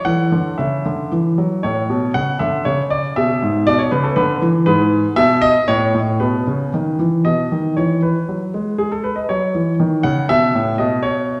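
Graceful and elegant, this short portion of a classical-period piano sonatina moves at 118 BPM in a straight 3/4, a clear, polished baby grand playing solo from G#2 up to F#5, tuned slightly high to A4 = 444 Hz. It opens in A major and shifts toward E major at 4.7 s, passing through chords such as E7, G#m and E/B before a new section begins at 7.8 s on E and moves to F#m. The piano sounds present and up front, yet the listening spot sits further back in a recital hall whose wet reverb lingers for 1.6 seconds.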